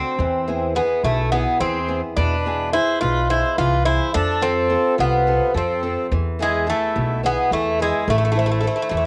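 A metallic, double-strung Greek bouzouki carries the melody up front through a cassette-tape haze in this brooding, cool Greek folk excerpt, set in a straight 7/8 at 213 BPM counted in eighths and moving from E to F, back to E and finally to Am. Beneath it, an old ladder-braced acoustic guitar with boxy, worn-string tone picks the accompaniment, while a woody pizzicato upright bass sits forward from 0.2 seconds. A reedy accordion joins at 1.0 seconds with a full, dry-tuned second line, all within a moderate studio reverb and the intimate character of a home cassette recording.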